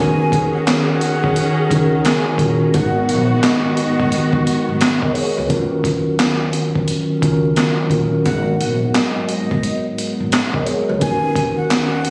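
Gritty and tough, this boom-bap hip-hop cut swings along in Eb minor territory, moving between Ebm7 and Abm7 chords. A compressed, pitched-down sampler-style drum kit sits up front from 0.3 seconds, with a thumpy kick, a high-tuned snare, handclaps and hi-hat, all re-recorded in a large room. Underneath, a woody, growly upright bass is plucked, while a clean tine electric piano plays accompaniment as if heard through built-in speakers, and a very quiet, detuned analog pad holds moody sustained chords with slow attack and chorus. A breathy jazz flute carries the melody with a straight tone and soft attack, trailed by tape echo, and a lush bowed string section adds close, vibrato-rich stabs with tape echo until 5.5 seconds. The sound has a lo-fi, phone-in-the-room character with vinyl crackle and light studio reverb, and it is cut from a longer piece.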